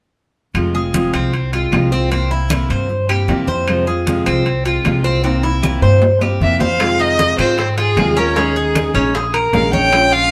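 Nostalgic and danceable, this excerpt of Cuban son and guajira opens with a full-bodied fingerpicked steel-string acoustic guitar with fresh strings and audible finger squeak, a woody pizzicato upright bass, and an up-front Cuban tres whose metallic double strings pick out arpeggios. Ringing congas and metal-shell timbales sit in the background with very quiet claves, and a drum fill carries into a new section. Just before it arrives, a bowed violin entering at 6.4 seconds takes the melody up front with vibrato, portamento and a smooth top, while tight, high-tuned bongos join at 6.8 seconds, the band playing live together in a moderate stone room.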